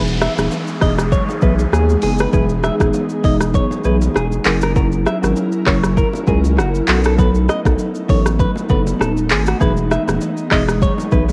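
Smooth and mellow, this afrobeats clip at 99 BPM with a gently swung 16th feel rides an Emaj7, F#7, B7 progression on an up-front electronic drum kit with deep kick, metallic hats, handclaps, rim clicks and shaker, a thick saturated sine sub bass, a woody buzzing marimba, a bright, twangy clean electric guitar riff with analog delay, an ethereal detuned pad with chorus and reverb in the background, distant, very quiet bongos and congas, and an electronic downlifter that ends at 4.8 seconds, all wrapped in a cassette home-recording haze.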